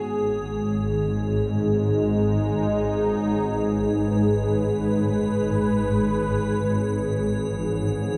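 Dark ambient drone in free time, ominous and vast, this 8.2-second excerpt from a longer piece sits on G#m before shifting to E at 7.4 seconds. Up front, a warbling, detuned sine drone swarms low with a grainy, vintage tension, while a sweeping resonant sawtooth pad holds bright, airy sustained chords with a filter swell, a noise layer and chorus. Faint above them, an icy, crystalline glass pad holds a single high note, and the whole blend sits in a wet cathedral reverb with a long, echoing tail.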